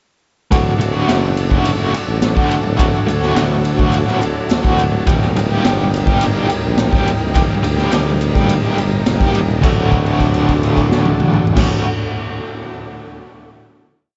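Mysterious and trippy, this short psychedelic rock piece moves at 105 BPM in a straight 4/4 over a D chord that shifts to Eb/D at 5.1 seconds. Up front, a dark, overdriven electric guitar plays a double-tracked riff of short syncopated chords with tremolo, while a raw garage drum kit, boomy and gritty with dark cymbals and a pumping small-room sound, drives the groove and breaks it at moments. A tuba carries the bass with a syncopated riff, its smooth top touched by light vibrato, and a buzzy vintage combo organ holds sustained chords with heavy vibrato in the background. From 2.0 seconds a swarming, nasal drone of detuned sines swells in slowly beneath, its own reverb and phaser adding a tense, evolving shimmer, and very quiet, grainy maracas shake close and dry until 9.9 seconds. At 9.6 seconds the groove gives way to a final D chord with a held note, all soaked in a huge, dreamy reverb with a dark, rolled-off top.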